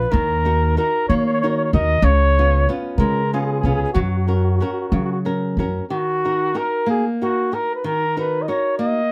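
Romantic and passionate, this short excerpt from an Italian folk serenade moves at a gentle 62 BPM in a lilting 6/8. It shifts from F# major toward Eb minor at 5.9 seconds over chords of D#m, C#7 and F#. A warm, vibrato-laden flugelhorn sings the melody in a classical style with a distant, roomy tone. Beneath it, a dark, fingerpicked flamenco guitar adds audible finger squeaks, and a woody, thumpy pizzicato upright bass anchors the low end until it drops out at 5.8 seconds. Close, detailed microphones and light reverb keep the players intimate.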